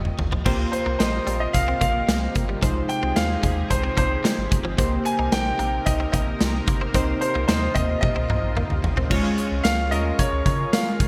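Bright, polished 1980s-style digital production, set in a lush hall reverb, frames this short, dramatic and nostalgic pop cut at 111 BPM in a straight 4/4. A big rock drum kit sits up front with a punchy kick, medium-tuned snare, hi-hat, tambourine, toms and crash cymbal, all treated with gated reverb, and drum fills open the excerpt and return at 8.0 seconds. A clear baby grand piano carries the melody with shimmer reverb and digital delay, while detuned analog keys built from pulse and sawtooth waves play the accompaniment with chorus and a filter sweep. A deep, round sine sub bass anchors the low end, and a shimmering, retro pulse-width pad with slow attack and long release holds sustained chords in the background. A twangy, direct-recorded clean electric guitar picks a compressed riff far back in the mix until 9.1 seconds, when the harmony moves from C7sus4, Fm7/C and Cm7 to a closing Absus2.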